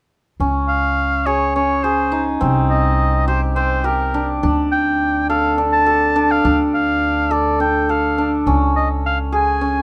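Hypnotic and restless, this contemporary instrumental moves in an uneven 7/8 with a straight feel and is cut from a longer piece. A bright, shimmering hammered dulcimer sets up ringing arpeggios from 0.4 seconds, sitting up front alongside an upright bass whose pizzicato gut strings give a woody, thumpy, dark floor. At 0.7 seconds a warm oboe enters as the solo voice, carrying the melody in a classical style with vibrato and a smooth top. The harmony shifts from Db through Cm and Dm before settling on a bare Db5 near the close. A light reverb gives the trio a touch of air, and all three parts play on until 9.8 seconds.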